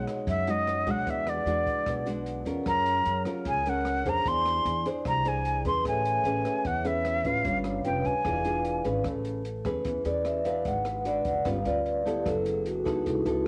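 An airy, up-front jazz flute with vibrato carries the melody over fingerpicked classical nylon-string guitar, mellow soft-mallet vibraphone and woody pizzicato upright bass, with an open jazz kit of punchy kick, hi-hat and rim click joining at 0.1 s, in this sophisticated, romantic bossa nova fragment cut from a longer piece. The flute bows out at 8.9 s, and from 9.1 s the ringing vibraphone, with its medium motor vibrato, takes a solo over the guitar, bass and dark, rolled-off drums. The flute, guitar, vibraphone and drums carry a cassette tape colour, and the whole home cassette recording sits in light reverb with a small room ambience.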